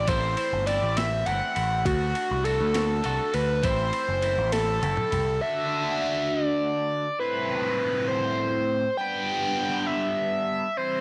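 Light reverb gives this short indie rock cut a modest sense of space, with its lead parts placed up front. The mood is moody and restless, moving in a straight 6/8 over chords that shift from Am7 and D through Dadd9 and Am to G6. A distorted, screaming synth lead carries the melody throughout, its full-bodied sawtooth-and-square tone sustained and guitar-like, with vibrato and a filter sweep that keep it evolving. Beneath it a biting, double-tracked overdriven guitar plays a riff through a phaser, while a growling picked electric bass, overdriven and amped, holds the low end. A compressed, sampler-style boom bap kit, re-recorded in a large room, brings a thumpy kick, high-tuned snare, ride and toms with tape-warm grit, then plays a fill before stopping at 5.3 seconds, with the bass dropping out at 5.4 seconds so synth and guitar carry the rest alone.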